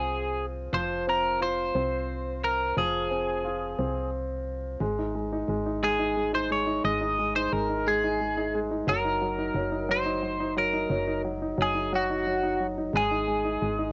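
A melancholic, aching six-eight pop ballad at 59 BPM, this short excerpt from a longer piece has an up-front twelve-string electric guitar carrying the melody, its bright, twangy, compressed picking bathed in plate reverb. Beneath it, an intimate grand piano with audible action noise, tape-coloured and also touched by plate reverb, plays accompaniment, while a punchy, dark FM bass gives a round low end. The harmony moves from Fm to Ab5 at 4.8 s and then through Ebm/Gb, all heard in a small room on a home cassette recording.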